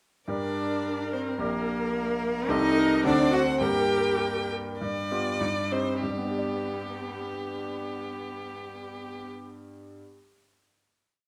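Stormy and restless, this short, complete classical-period movement for piano quartet in G minor moves at a quick 95-110 BPM in 2/4 with a rubato feel, as a warm, smooth bowed violin carries the tune doubled at the octave, a rich, focused cello adds a counter-melody and sustained chords, a viola with vibrato and expressive portamento plays chords in the rhythm of the tune until 4.6 s, and a bright, brilliant vintage grand piano sits up front with syncopated block chords, the music slowing from 3.1 s before settling on a closing G major chord at 6.0 s in a reverberant recital hall.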